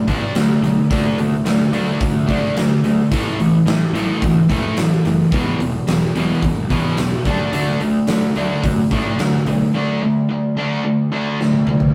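Hard rock at 109 BPM with a powerful, swaggering mood, this rough rehearsal-room cut pairs a bright cranked stack guitar and an up-front, dark, sludgy distorted guitar on an overdriven riff over D5, A5 and E5 power chords, while a growly fuzz picked electric bass sits in the background until 9.6 seconds and a huge arena drum kit with a fat snare and punchy kick drives everything to a drum fill at 11.4 seconds under light reverb.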